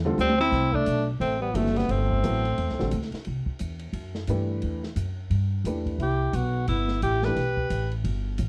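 A swung 4/4 at 176 BPM drives this open, hypnotic modal jazz excerpt in C lydian, where a drum fill opens on a dark, small-room kit, a woody, gut-strung upright bass thumps up front, an intimate, slightly detuned upright piano comps with audible action noise, and a subtoned tenor saxophone with slapback echo leads over a punchy, scooping trombone in two phrases, the second arriving at 6.0 seconds over an E minor chord, all captured in a dry, close 1970s-style studio sound.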